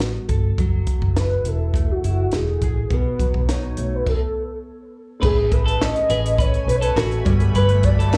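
A fingerpicked nylon-string guitar with a full-bodied, deep classical tone opens this sunny, laid-back bedroom-pop excerpt, alongside a round, foam-muted electric bass and a dry, compact cocktail drum kit with a punchy kick, high-tuned snare and dark cymbals, both sitting up front. At 1.2 seconds a velvety synth lead takes the melody, its detuned unison tone gliding with portamento through lush chorus, plate reverb and tape echo, while the guitar carries a subtle chorus, vibrato and slapback echo. After a brief stop, the second section arrives at 5.2 seconds with a twangy, slightly broken-up electric guitar adding a picked second line and a very quiet, woody upright piano with audible action noise, followed at 5.8 seconds by crisp group handclaps in the background. A shimmering, ethereal pad joins at 6.0 seconds, its warbling, granular sustained chords adding an octave-up glow. The whole band sounds like a live gig heard through the venue's sound system, wrapped in light club reverb.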